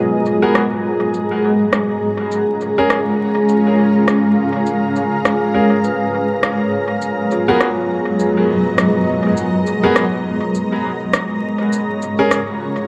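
Moderate spring reverb and a layer of vinyl crackle frame this spacious, hazy ambient dub excerpt, cut from a longer piece, with a loose swing in its sixteenth-note feel. Up front, a granular cloud pad holds sustained chords built from detuned sine and sawtooth voices, its slow attack and long release giving a blurred, evolving quality as the harmony moves between G#m9 and A#m7. Behind it, a bubbling stepped-filter texture sits on a single resonant note with chorus and random filter steps, while a vibraphone played with medium mallets traces metallic, ringing arpeggios with a slow motor vibrato through a low-pass filter and dub echo, dropping out at 10.6 seconds. An electronic shaker and rim click, overdriven and re-recorded in a small room, supplies the beat with low-pass filtering and dub echo. Bright upright piano stabs, woody and intimate with audible action noise and long sustain, also pass through a low-pass filter and dub echo, adding brilliant accents from 0.4 seconds onward.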